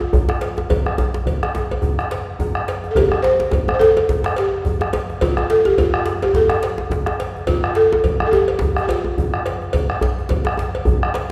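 A woody, buzzing balafon leads this powerful, earthy piece of West African drum ensemble music, its dark, smooth melody played with soft rubber mallets sitting up front within an F major pentatonic range from F4 to C5. Beneath it, a deep, distant bombo anchors the groove at 106 BPM in 4/4, with a swung sixteenth-note feel. Two djembes fill out the rhythm: one struck with hard hands, cracking and saturated with metal rattles and a compressed edge, the other tight and close. A metallic cowbell sits in the background. The whole passage is cut from a longer piece and set in a reverberant concert hall; the balafon falls silent at 9.4 seconds, leaving the drums and bell to carry on until 11.3 seconds.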